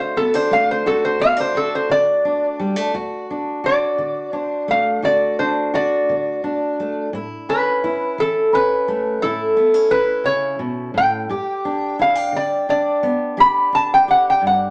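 A straight 12/8 feel carries this laid-back, rollicking acoustic country blues, cut from a longer piece, as an up-front metal-body resonator guitar, played with fingerpicks and a steel bar, sings a metallic, nasal slide melody over a warm fingerpicked steel-string acoustic guitar accompaniment with the odd finger squeak, the pair set in a moderate studio reverb.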